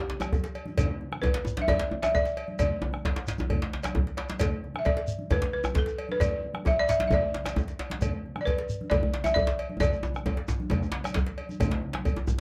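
West African traditional drum ensemble music, driving and powerful, moving at 133 BPM in a straight 4/4 feel, cut from a longer piece. An up-front balafon carries the melody between G4 and E5 with a woody, buzzing tone struck with hard rubber mallets, its band-limited, vintage character sitting dry against the drums until it stops at 11.1 seconds. Two djembes drive the groove: one tight and cracking under hard hands, the other medium-tuned, compressed and saturated at the front of the mix. A round, close bombo anchors the low end, while medium-tuned congas ring from a distant, roomy space with soft hands. A metallic cowbell and a grainy, mellow shekere fill out the percussion, and a drum fill from 9.8 seconds leads toward the close. The production is dark and warm, set in a small, reverberant room.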